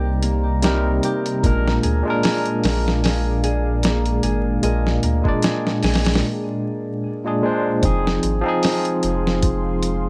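Trip hop with a dark, brooding mood, this short cut from a longer piece rides a lightly swung groove in 4/4. A barky, bright tine electric piano sits up front with harmonic tremolo, 12-bit sampler grit and tape echo, moving through Cm7 and Bb7 before settling on Fm7 at 7.8 seconds. Beneath it, a round, soft dub sub bass holds the low end while a deep, warbling ambient pad with chorus and built-in reverb lingers in the background. A fingerpicked Celtic harp rings out arpeggios through the same gritty tape echo until 8.2 seconds. The dusty, sampler-style drum kit, compressed and tape-warm with a thumpy kick, medium-tuned snare and hi-hat, sits in a small room, with a break from 6.2 to 7.8 seconds. Vinyl crackle runs throughout, adding to the dry, worn character.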